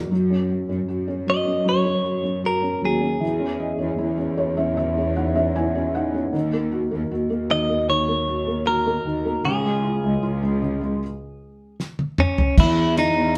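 Emotional and melancholic, this pop ballad excerpt moves in a straight 4/4, with the band playing together in one room under a moderate studio reverb. A felt-muted upright piano carries the accompaniment in a mellow, intimate tone with audible action noise, and it adds a fill at 4.0 seconds. Beneath it, a studio cello section bows the bass line, smooth and even with light vibrato. From 1.3 seconds a clean, direct-recorded electric guitar takes the melody; it is bright, twangy and compressed, with a spring reverb. During a late stop, a damped 70s drum kit enters at 11.8 seconds with a fill, its dry, dark sound built on a fat snare and a tight kick, along with crash, ride and toms.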